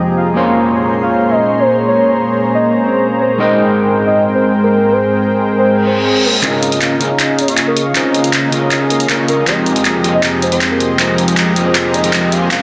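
A smooth, detuned supersaw riff sits up front throughout this euphoric, playful future bass clip, cut from a longer piece and set in a half-time feel. Alongside it, a round, octave-layered synth lead carries the melody with vibrato, chorus, phaser and delay, while a breathy pad holds sustained chords, moving from Bbm9 and Abmaj9 to Db69 and Fm11. A dark, slightly broken-up electric guitar adds fingered accompaniment in the background. A reverse cymbal rises at 5.8 seconds, and at 6.4 seconds a layered dubstep kit with handclaps and hi-hat arrives up front, its cymbals, snare and hats low-pass filtered, as filter sweeps on the supersaw, lead and pad drive a build-up with a drum fill. A lush hall reverb surrounds the dense, heavily limited mix, with a faint mains hum underneath.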